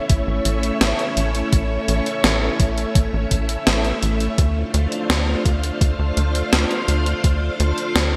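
A lush string machine ensemble opens the passage, holding sustained chords with a slow attack and long release, its vintage sawtooth tone thickened by ensemble chorus and a sub octave and given a pumping motion by sidechain compression. From 0.1 seconds a tight, punchy sequencer bass drives underneath in a dark, evolving blend of sawtooth and square wave with a fast-attack filter pluck, alongside a thumpy, tape-flavoured electronic kick drum. A gated 80s digital drum machine supplies hi-hat and a snare drenched in gated reverb, sitting up front with a sampler-style, small-room character. This nostalgic, cinematic synthwave fragment moves at a steady 84 BPM in straight 4/4 in D minor, with the harmony shifting from A to Dm7 at 4.4 seconds. A moderate plate reverb and a bright 1980s-style digital production frame the whole short passage, which is cut from a longer piece.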